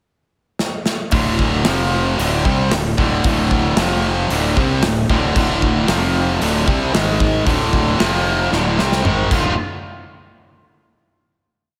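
A tight, distorted guitar with slapback echo leads this gritty, swaggering classic rock piece, its up-front power-chord riff arriving at 1.1 s alongside a crunchier overdriven guitar in the background and a growly fuzz bass that doubles the riff in driving eighth notes, while a punchy big-room drum kit with bright cymbals opens with a fill at 0.6 s, all set in an arena-sized concert hall reverb that carries a final hit at 9.6 s.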